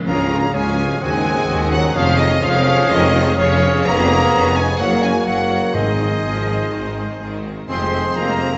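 Lively and spirited, this fast, dramatic romantic orchestral passage moves at 126 BPM in 4/4 with a rubato feel, settled in D-flat major and cut from a longer piece. A rich, smooth studio violin section carries the melody high above the orchestra, while an airy silver flute shares its register on a second line. Around it sit a clear, distant oboe, a mellow clarinet and a very quiet, intense symphonic violin section on further second lines, while a clear viola section and a bassoon fill the accompaniment. Mellow French horns hold sustained chords in the background over a bass of mellow tuba, focused cellos and distant double basses. A thumb-plucked, ringing concert harp spins quiet arpeggios throughout, hard-mallet timpani strike at the opening and again near 5.7 seconds, and a dark tam-tam shimmers faintly through the first 1.9 seconds, all wrapped in a wet recital-hall reverb with a soft, rounded top end.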